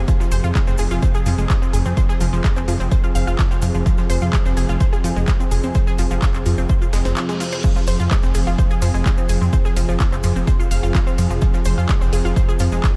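A melancholic, hypnotic stretch of melodic techno opens on a sweeping resonant pad holding sustained chords with a filter swell and chorus, while a lush, warbling unison pluck spins bright arpeggios through an analog delay. Beneath them, a dark detuned saw bass rumbles deep and up front, and a very quiet swarming drone adds a tense, granular shimmer. The pad, pluck and bass all pump against the sidechain, giving the sustained layers a breathing motion. A punchy, tape-warm electronic kick drives from the front of the mix, joined by a techno drum kit with smooth hats, handclaps, ride and crash cymbals in studio reverb, while a gritty, overdriven soul sampler-style kit adds faint hi-hat and snare. A grainy, close and dry cabasa sits in the background, and an electronic reverse cymbal rises from 7.0 seconds into a brief break before the groove carries on.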